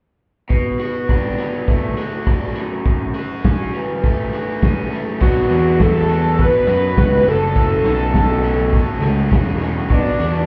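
Cool and bittersweet, this indie rock clip opens at 0.5 seconds with a bright, overdriven garage guitar riff over a punchy acoustic drum kit of kick, medium-tuned snare, rim click, hi-hat and crash, whose rolled-off top and stone-room sound keep it dark and smooth, moving between Bm7 and F#m7. At 5.2 seconds a fuzzy, round picked electric bass and a screaming, guitar-like sawtooth synth lead arrive up front, the lead gritty with vibrato, distortion and slapback echo, before the clip settles on Bm and ends at 10.5 seconds. The whole mix sounds muffled, as if heard through a wall, with light reverb and club ambience.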